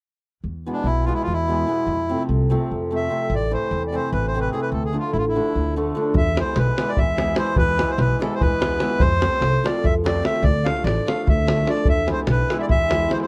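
A reedy, clear accordion sits up front with the melody, its dry tuning giving a sharp edge to this virtuosic, bittersweet Balkan wedding-band piece in E phrygian dominant. The tune moves in a brisk 7/8 at 294 BPM counted in eighths, over a progression that circles from E to F, then Am and Dm, before returning to E. A shimmering, ringing hammered dulcimer, also up front, fills in the accompaniment. A woody, thumpy pizzicato upright bass on gut strings anchors the low end from 0.4 seconds. At 6.1 seconds a tight davul enters, adding drive with a live-room sound as the second section begins. The recording is barely reverberant, with some lossy compression artefacts, and the passage is cut from a longer piece.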